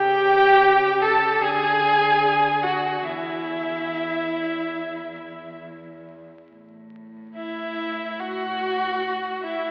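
Serene and tender, this fragment of a slow, rubato romantic movement for string quartet in A major at 67-76 BPM sets a dark, woody first-violin melody up front over a second violin line and a rich, focused viola accompaniment, also up front, with a close cello bass sitting quietly beneath, all four bowed with vibrato by single players and bathed in a long church reverb under vinyl crackle and an AM radio tone.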